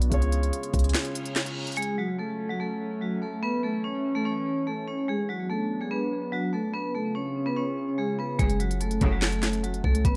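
A dark, mellow piano and a warbling, lo-fi pad open this eerie, brooding trap cut at 145 BPM in a half-time feel in F# minor, with knocking kick, sharp snare and crisp hats over a deep, boomy 808 before a break at 0.9 seconds and a reverse cymbal leading into the ringing, metallic vibraphone melody with tape echo at 1.8 seconds, which carries over the sustained pad until the drums and 808 return and biting symphonic string stabs enter at 8.4 seconds in a small room.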